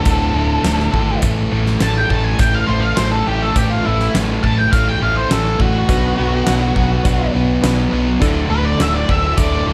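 In a straight 4/4 groove, this confident, driving classic rock excerpt rides on a huge arena drum kit with a fat snare and punchy kick, alongside a dark, round hollow-body bass. Up front, a fuzzy octave lead guitar solos over a bright, biting rhythm guitar and a crunchy background guitar riffing on D5 and A5. At 5.9 s the chords move to Bm and then Dsus2, as a barky, gritty electric piano and a very quiet, double-tracked crunch guitar join, all in light reverb and studio ambience.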